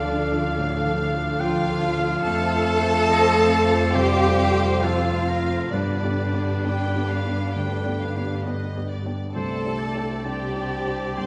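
A cinematic, emotional film score for orchestra, this short excerpt moves with a sorrowful, bittersweet rubato feel, drifting through Dm, F, G and Csus2 across its 11.3 seconds. A smooth violin section carries the melody with light vibrato, while a clear oboe with a vintage, classical character and a second, lush violin section in the background shape supporting lines around it. A rich, focused cello section and a distant double bass section hold the bass, and a very quiet viola section fills the middle of the accompaniment. An intimate grand piano sits in the background with audible action noise, joined by ringing, fingerpicked harp arpeggios and a dark, roomy French horn section sustaining chords from afar. The whole ensemble plays throughout, bathed in a wet scoring stage reverb that lends the sound a spacious, cinematic glow.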